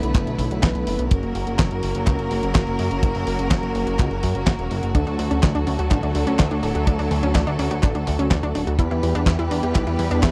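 A sampler-style digital drum machine with handclaps, hi-hat and a fat, tape-tinged snare sets a straight italo disco groove, joined a moment later by a tight, up-front acoustic kick, while a glossy, nasal chorused synth bass holds down the low end. Above them, a rich bowed string section with biting vibrato sustains bittersweet, melodramatic chords moving from Bm7 through F# and D to Em. At 4.9 seconds, a bright, round analog pluck arrives with detuned arpeggios, colored by chorus and tape echo, all within a dry, close 1970s-style studio sound.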